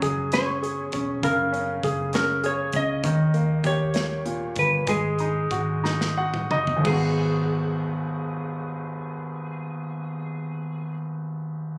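In 6/8 at 58-67 BPM, this aching, dramatic pop ballad in G# minor rests on a clear, up-front concert grand piano with deep bass and short sustain, a round, punchy, foam-muted vintage fingered electric bass, and a polished studio drum kit with bright cymbals and a tight kick. A clean lap steel guitar, played with fingerpicks and slide, carries the melody from 0.3 s, the tempo slows from 3.0 s, and the drums and piano share a fill from 5.8 s before the drums stop at 7.0 s. Cut from a longer piece, it sounds captured on a phone in the room, with club reverb and compression.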